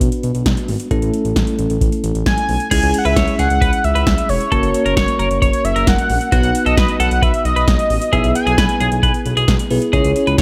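Light reverb frames this cool, driving synth-pop excerpt, which rides on an overdriven analog drum machine, re-recorded in a large room and set up front, with a deep kick, punchy snare and metallic hats. Beneath it sit a smooth, gliding sawtooth synth bass and a bell-like tine electric piano moving through Bm, A, C#m, F#, B and E/B. At 2.3 seconds a bold, retro octave-doubled lead enters with detuned sawtooth tone, vibrato, chorus and delay, carrying the melody until 9.2 seconds, and from 2.7 seconds a twangy, compressed twelve-string electric guitar adds a picked second line through delay.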